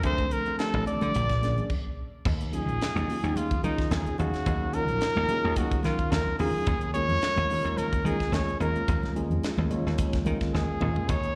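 A clear, up-front trumpet leads this slick, driving electric jazz fusion piece, its vibrato, scooped notes and smooth top giving the melody a polished jazz voice that moves into a solo at 2.3 seconds. Beneath it, a dry thumbed slap bass sits punchy and bright, foam-muted and direct, while a tight funk drum kit with dark cymbals, a high-tuned snare and a tight kick drives the lightly swung 16th-note feel. A clean tine electric piano heard through its built-in speakers fills in the harmony with a slapback echo, and the trumpet carries both slapback and tape echo. Soft-handed, damped congas add a very quiet, thin-skinned tap close in the mix. After a brief stop from 1.7 seconds, the chords settle from Dm7 and Bb7alt onto Ebm11 and Bbm7/Eb, and a drum fill at 10.5 seconds rounds off this passage cut from a longer live gig, heard through the venue's PA with recital-hall reverb.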